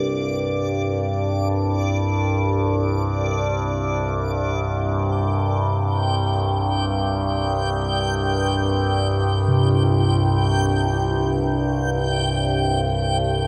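Cavernous and desolate, this dark ambient drone drifts in free time, tuned to A4 = 439 Hz, and is cut from a longer piece. Up front, an overtone-sweeping drone sits low between C2 and G2, its sawtooth and sine tones moving through resonant overtones with ring modulation, a slow attack, long release, chorus and its own reverb. Above it, a reversed, granular texture between D5 and G5 fades in across the whole 13.5 seconds, its triangle tone dreamy and soft-edged, washed in shimmer reverb. In the background, a bronze singing bowl struck with a suede striker plays meditative arpeggios from C3 to D4, heard from 0.0 to 1.8 seconds and again from 9.5 seconds, its metallic ring beating slowly through a delay. A huge, wet reverb with a long decay surrounds the whole recording, hovering over a C5 chord.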